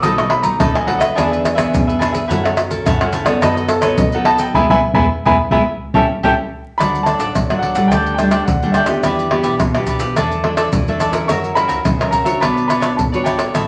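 Sunny and festive, this excerpt from a longer samba and choro piece puts a natural-toned baby grand piano up top, featured as soloist through the first 6.8 seconds, with the band landing a shared accent from 4.6 seconds before the music moves into a new section. Crisp, picked cavaquinho and a bright, fingerpicked nylon-string guitar, with audible finger squeaks, carry the accompaniment, while a woody pizzicato upright bass sits in the background. Close, dry maracas, tight surdo, pandeiro and tamborim sit up front, all wrapped in a club reverb and a layer of vinyl crackle.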